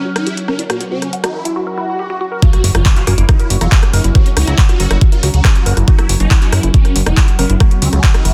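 Driving and hypnotic, this psychedelic trance excerpt at 139 BPM opens with a swarming, aggressive rave lead, a resonant overtone-sweeping drone with gritty sampler texture, a very quiet breathy pad that drops out by 1.6 s, and a woody wave-folded pluck riff. The lead, drone and pluck all pump, and the lead and pluck trail dub echo, while a filter sweeps over the overdriven techno kit of claps, hats and rim clicks. A swell rises into the drop at 2.4 s, where a knocking, up-front kick takes hold, followed at 2.6 s by a fat, detuned analog bass, and briefly by a metallic wobble bass from 3.1 s in the background. The dry, dense master sounds heavily limited.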